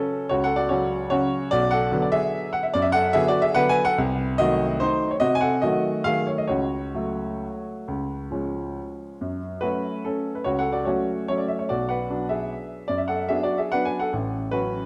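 A solo grand piano opens at 0.0 seconds, its clear, present tone placed up front in a classical waltz of wistful, nostalgic character. The music moves in a flexible triple metre, the rubato letting the pulse breathe and hold back in the manner of a dance half-remembered. The piano spans from A1 in the bass to G#5 in the treble, and its harmony shifts through a darkening diminished chord at 4.0 seconds before settling back toward home. A long, wet recital-hall reverb surrounds the instrument, and the overall production leans dark. The passage is cut from a longer piece, ending at 14.9 seconds as the opening section is still unfolding.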